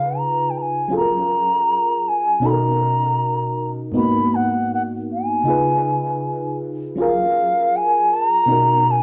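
A bass bansuri carries the melody up front, its pure, bamboo tone shaded with vibrato and a soft attack, in this sweet, smooth reggae passage at 79 BPM in F# major, cut from a longer piece. Beneath it, a dark FM electric piano with a fast, decaying attack, a noise layer and tape echo plays chords moving from C#7 through F#maj7, Bmaj7 and G#m7 across the 9 seconds. The band plays live in one room, and moderate studio reverb gives the two parts a shared sense of space.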